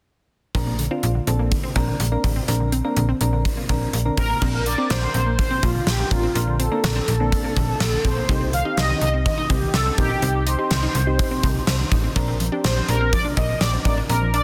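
A punchy gated 80s drum kit with a fat snare, bright cymbals and a softly clipped kick drives this bright, wistful synth-pop excerpt in Bb major at 124 BPM from the start, alongside a snappy, metallic slap-like FM bass up front, round chorused electric-piano-like synth keys, and lush detuned unison pluck arpeggios with tape echo sitting in the background, before a mellow, dark synth brass melody with chorus, phaser, vibrato and tape echo enters at 4.2 seconds over chords moving from Bbadd9 to Cm and back, in a dense, heavily limited mix with light reverb.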